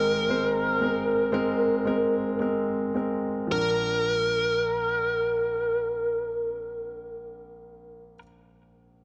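Pop in Bb major with an emotional, hopeful mood, this short fragment from a longer piece moves at a slow 53-59 BPM in 4/4, easing back in tempo over its opening bars as a barely audible electronic downlifter sinks beneath a chord of Abadd9. Up front, a bluesy overdriven electric lead guitar with a picked, distorted tone carries the melody on Bb4. Beside it, a smooth, vintage grand piano spans the low bass to the middle register, reaching Bb harmony at 3.5 seconds. The guitar falls away at 8.2 seconds, leaving the piano alone until 9.0 seconds, all bathed in a moderate plate reverb with a softened, rounded top end.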